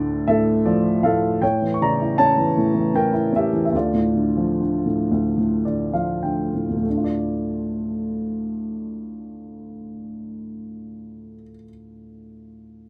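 A slow, rubato 6/8 pulse at 30-54 BPM carries this reflective, melancholic classical excerpt in D minor, where a woody, up-front upright piano plays alone from D2 to C#6 with fills at 0.3 and 5.1 seconds, slowing down between 1.4 and 6.9 seconds as the harmony moves from Dm to A7 and back, all captured by close, detailed microphones in light reverb.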